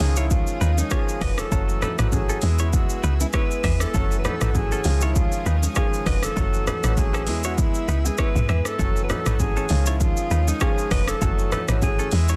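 Hypnotic and sultry, this afrobeats excerpt moves at 99 BPM in 4/4 with a light 16th-note swing, set in F# dorian and tuned slightly flat to A4 = 437 Hz. A breathy alto saxophone carries the solo melody with light vibrato, scooped notes and a smooth top, touched with delay, while a clear concert grand piano accompanies with deep bass, long sustain and audible action noise. Underneath, a woody, punchy log drum bass with a dark, decaying tone sits up front, and a very quiet, airy pad holds detuned sustained chords colored by chorus and phaser. From 0.2 seconds an electronic afro-pop drum kit joins with a deep kick, metallic hats, rim click, shaker, toms and a softly clipped snare, alongside a bright, twangy clean electric guitar riff with delay tucked in the background. Ringing bongos and congas add faint hand percussion over a repeating C#add9, F#m7 and E progression, all wrapped in digital ambience and a dense, heavily limited modern master.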